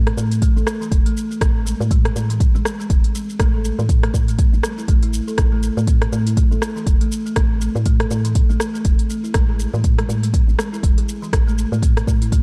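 A buzzing, hollow-box kalimba spins arpeggios through dub echo over a round, woody FM bass from the start, both pumping with sidechain, before a layered deep house kit of smooth hi-hats, rim clicks and shaker enters at 0.1 seconds and an up-front, deep electronic kick lands at 0.4 seconds, shaping a spiritual afro house groove in A minor at 121 BPM on swung 16ths, set in a dark digital ambience in this short cut from a longer piece.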